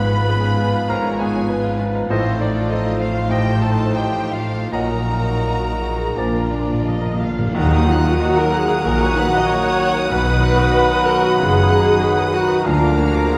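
A brilliant grand piano with audible action noise and lush violins open this passionate, tragic romantic movement in a rubato 4/4, over an airy silver flute, a close-miked clarinet, a second, more distant violin section, soft-attack violas, very quiet trombone and French horn chords, and smooth cellos and double basses; a light-vibrato oboe and vintage bassoon join at 0.9 s, then a cymbal swell with tam-tam and a hard-mallet timpani fill at 6.2 s lead into a band accent at 7.5 s, with mellow trumpet stabs entering from 7.6 s, all within a moderate concert hall reverb.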